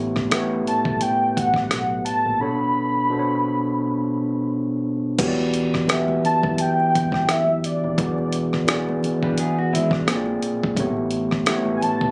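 A barky, overdriven tine electric piano stands out in this smooth, sultry neo-soul R&B excerpt with a light swing, alongside a velvety, chorused synth lead with vibrato, a dark, round fingered dub bass set back in the mix, and a gritty, compressed sampler-style drum kit with a thumpy kick that drops out from 2.4 to 5.2 seconds, while very quiet, high-tuned congas enter at 5.2 seconds and a slightly broken-up, lo-fi electric guitar adds a brief picked line at 9.2 seconds, all heard as if captured on a phone in a small club room.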